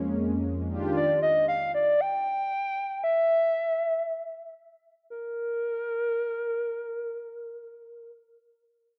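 A soft, detuned analog pad with chorus opens this amapiano fragment in free time, holding sustained chords in Eb major for only the first second before giving way. From 1.0 s a hollow, woody clarinet-like synth lead with vibrato and a noise layer carries a soulful, relaxed melody up front until 8.1 s. The sound is dry and gritty with light reverb, and the piece is cut from a longer whole.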